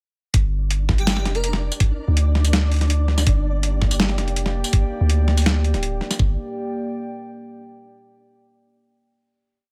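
A dry, close-sounding piece of half-time drum and bass with a cinematic, heavy mood, built on a drop that runs from the opening into a closing chord at 6.2 seconds. An up-front knocking electronic kick and a gritty, overdriven sampler-style kit of snare, closed hi-hat and tambourine keep a sparse half-time beat over long, deep sine 808-style bass notes, while a faint flickering granular texture holds a high note in its own reverb. An airy, dreamy lead with chorus and dub echo slips in a brief phrase at 1.0 seconds, and a moody, detuned analog pad with chorus and sidechain pumping enters at 3.5 seconds, its slowly shifting chords carrying through to the ending.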